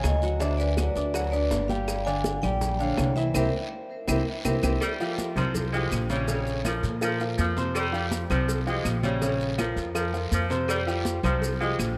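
Salsa at 163 BPM in F minor, fiery and danceable, this excerpt opens with a metallic, ringing vibraphone melody under medium hard mallets and slow motor vibrato, carried over a clear, open baby grand piano, a thumpy gut-string upright bass plucked up front, and a bed of congas, claves, raspy guiro, grainy maracas, and tight, distant bongos and cowbell. A drum fill and band accent from 3.3 to 4.8 seconds hand off to an edgy, vintage saxophone section that enters at 4.8 seconds with a low second line. The dreamy mix is soaked in plate reverb, and diffuse ambient delay trails both the vibraphone and the saxophones.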